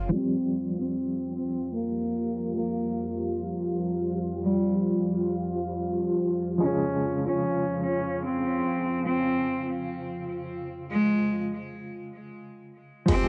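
Melancholic, dark trip hop at 74 BPM in F minor, cut from a longer piece and moving from Fsus2 to Db: a biting, up-front solo cello with light vibrato carries the melody over a muted, mellow felt-piano accompaniment with tremolo and tape echo, while a full-bodied string-machine cello bed with ensemble chorus and a filter sweep shared with the piano sustains beneath. A tense, detuned bowed-like drone hovers in the background until 11.5 s, and a round sub bass touches in only at the very start and again at 13.1 s, when gritty, pitched-down sampler drums with a thumpy kick and hi-hat arrive, all framed in the dulled haze of a home cassette recording.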